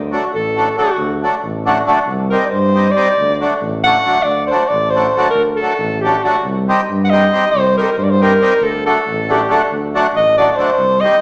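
A vibrato-laden alto saxophone leads this restless, virtuosic fragment of Balkan folk, soloing up front from 0.1 seconds with a smooth top and a classical poise as it carries the melody. The feel is a Balkan wedding band in 5/8, straight rather than swung, and the passage is cut from a longer piece. Beside it, a reedy accordion fills the middle with a full, rich accompaniment that sits forward in the mix. Underneath, a tuba plays the bass line, warm and gently vibrato-tinged, with a distant, roomy quality that sets it behind the other two. The harmony alternates between D and C minor, shifting to C minor at 2.1 seconds, back to D at 3.2, to C minor again at 6.4, and returning to D at 8.6 seconds. A large studio reverb gives the whole band a wet, spacious sheen.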